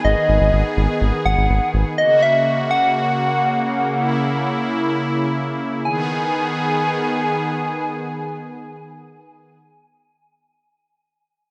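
Nocturnal and cool, this pop fragment, cut from a longer piece, moves at a steady straight pulse over a G# minor to F# chord change that returns to G# minor around 5.9 s. A gentle, keys-like FM synth lead carries the melody with chorus, tremolo and tape echo, above a brassy, nasal, detuned analog pad holding sustained chords with a filter sweep and chorus. A deep, round analog bass anchors only the opening until 1.8 s, and a moderate echo chamber reverb lends the whole a vintage sheen.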